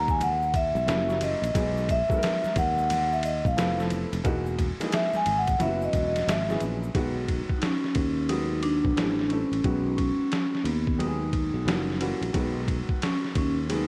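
Warm and smooth, this jazz-hop excerpt from a longer hip hop piece moves at 89 BPM in B major with a swung sixteenth-note feel, as a mellow vibraphone played with soft mallets carries the melody in a solo over the opening 6.9 seconds, its metallic ringing tone sitting forward in the mix. Beneath it, a worn, woody and slightly detuned upright piano with short sustain plays chords such as G#m7, F#7b9 and Fmaj9#11, while a growly fretless electric bass holds the low end. A gritty, compressed, pitched-down sampler-style drum kit with a thumpy kick sits up front, close and dry hand-played congas with an egg shaker linger in the background until 6.9 seconds, and light reverb softens the whole blend.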